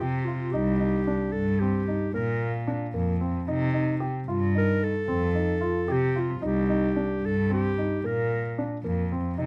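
Set in a straight 11/8 at 224 BPM counted in eighths, this restless, pensive contemporary instrumental in C dorian pairs a mellow, classical-style solo clarinet melody up front, which stops at 8.6 seconds, with dark, worn grand piano arpeggios of long sustain and a rich, floating bowed cello bass played sul tasto, captured by close, detailed microphones with little reverb and cut from a longer piece.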